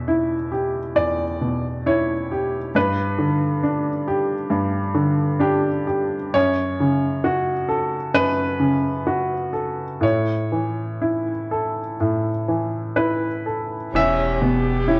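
A bright, woody upright piano opens this fragile, reflective neoclassical fragment of a longer piece, playing up front with short sustain over an unhurried rubato chord progression, before a bowed cello and a deep, full sine-toned sub bass enter at 13.9 seconds and a single expressive viola with vibrato and portamento joins at 14.0 seconds, all set in a large studio reverb and colored by the worn, warbling pitch drift of old cassette tape.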